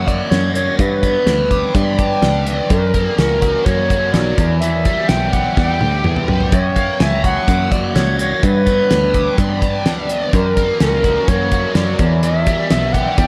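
Hypnotic and trippy, this psychedelic rock excerpt moves at 126 BPM in a straight 4/4, rooted in F# phrygian dominant with chords circling between F#, G and Em. A pure, straight-toned concert flute carries the melody up front, its tongued notes trailing into a diffuse ambient delay. Beneath it, a biting overdriven guitar plays a double-tracked riff coloured by flanger, while a picked electric bass with a round, foam-muted tone holds the low end. A damped 70s drum kit enters at 0.1 seconds with a fat snare, tight kick and rolled-off top, and a drum fill arrives at 5.6 seconds. The whole mix is soaked in a cathedral reverb with a 6.1-second decay, giving the passage a dreamy, cavernous haze.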